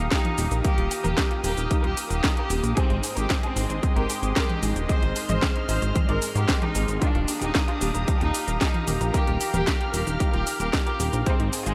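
Romantic and playful, this italo disco excerpt moves at 113 BPM in Eb major, its dreamy mix soaked in cathedral reverb as chords shift from Ebadd9 to Ab at 2.8 seconds and back at 7.0 seconds. A punchy, overdriven electronic kick sits up front alongside a house kit with a cracking snare, handclaps, cabasa, hi-hat and toms. A glossy chorused synth bass, a smooth warbling analog pad, very quiet nasal pluck arpeggios and faint, boxy grand piano stabs support a biting bowed violin section that carries the melody through a diffuse ambient delay.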